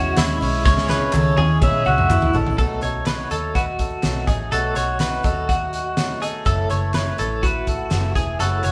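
A band playing live in one stone room, with a moderate reverb, gives this breezy, sunny snippet of jangly indie pop its open, natural sound. A reedy, breathy melodica carries the melody, close-miked and dry with a nasal edge, over a shimmering, octave-doubled twelve-string acoustic guitar whose picking catches the odd finger squeak. A clean, compressed twelve-string electric guitar plays arpeggios through a tremolo effect, while a dark, foam-muted vintage electric bass adds a round, amped low end. At 0.2 seconds a loose acoustic drum kit enters up front with a punchy kick, a fat snare and a pumping room sound, together with a very quiet, crisp group handclap, and the drums play a fill from 0.7 seconds. A swirling sawtooth string machine, treated with ensemble chorus and phaser, holds soft-edged chords in the background until 2.6 seconds, where the harmony moves from C#m to B7 before settling on F#m7.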